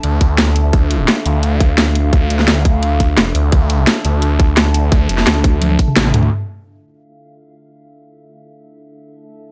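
A straight 4/4 groove of tight, overdriven electronic kick and an up-front, layered kit with a cracking snare and bright hats drives this aggressive, futuristic slice of dark technical drum and bass, ending in a drum fill and a band accent before 6.3 seconds. A thick, swirling bass of detuned, phased sawtooth with tube saturation pumps under sidechain, while a deep, moody analog pad with subtle chorus holds sustained chords farther back. From 6.3 to 9.5 seconds that pad carries on alone under a filter sweep, all within a dark production lightly touched by digital ambience.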